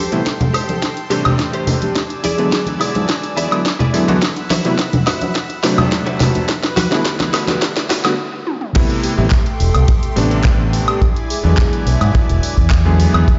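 Groovy and sensual, this nu-disco cut rides a tight, up-front kick and an overdriven house kit with cracking snare and bright hats, ringing congas, a direct, amped fingered bass with an envelope filter, a clangy, cutting electric grand piano pumping under tape echo, a lush detuned pad, a clean picked guitar riff soaked in chorus in the background until 8.1 seconds, and a round, dark octave-layered synth lead with vibrato, building through a long drum fill to a short break at 8.2 seconds before the drop at 8.8 seconds.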